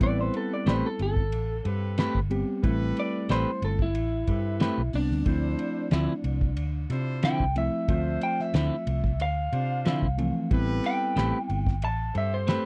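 A clean, picked electric guitar is the featured voice, entering at 0.7 s with stabs that carry this mournful, brooding soul blues in A minor. Set at 91 BPM in a straight 4/4, the excerpt moves from Am9 to Dm9 at 5.3 s and back to Am9. Beneath it, a second electric guitar runs through a small old amp, its compressed, slightly broken-up tone sitting dark and up front, while a reedy electric piano comps through its built-in speakers until 11.7 s. A foam-muted fingered bass adds a round, amped low end, and a cloth-damped kit gives a thuddy feel with a fat snare, tight kick and dark, rolled-off cymbals. A jazz-style horn section holds warm, smooth-topped sustained chords further back in a dry, close recording with a 1970s studio character.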